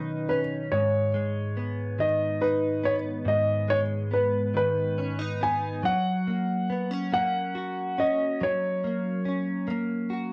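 A home cassette recording with a moderate studio reverb gives this short pop fragment in 6/8 a close, heartfelt and romantic air. A clear, intimate grand piano carries the melody up front, its action noise audible and its tone polished under plate reverb and tape coloring, until it stops at 9.7 seconds. Beneath it, a double-tracked, direct-recorded clean electric guitar picks a compressed accompaniment through the same plate reverb and tape, moving from Badd9 to G#m and on to F# at 5.8 seconds before ending at 10.3 seconds.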